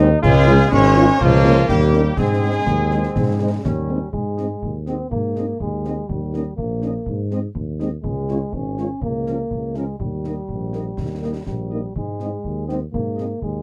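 Dark, soft-edged French horns, tight trombone chords and a mellow tuba bass open this festive, rousing military-style march for wind band in a straight two-beat metre, with the trombones dropping out at 4.1 seconds. Almost at once a distant, roomy trumpet section takes the melody, while a clear euphonium with light vibrato carries a second line and closely recorded concert snare, bass drum and dark clash cymbals drive the beat. Light reverb and a dark, warm production round out this excerpt cut from a longer piece.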